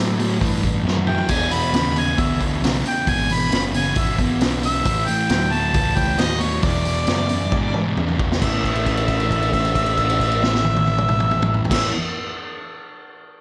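Blues rock in the power trio mold with a southern rock edge, this gritty, driving excerpt is cut from a longer piece and moves in a straight 4/4 feel. A double-tracked fuzz guitar sits up front with a distorted, picked riff spanning two octaves, joined throughout by a growling, overdriven electric bass with a round, amped tone. An acoustic vintage drum kit comes in at 0.2 seconds with a punchy kick, medium-tuned snare and dark cymbals, adding fills near the start and again from 7.5 to 8.4 seconds. A clear harmonica enters at 1.1 seconds with a jazz-inflected solo full of scooped notes and light vibrato, sounding distant and roomy against the forward guitar and drums. The harmony shifts between dominant chords before settling on a plain major chord at 8.4 seconds, where a long note is held, all within a big arena sound and a moderate concert hall reverb.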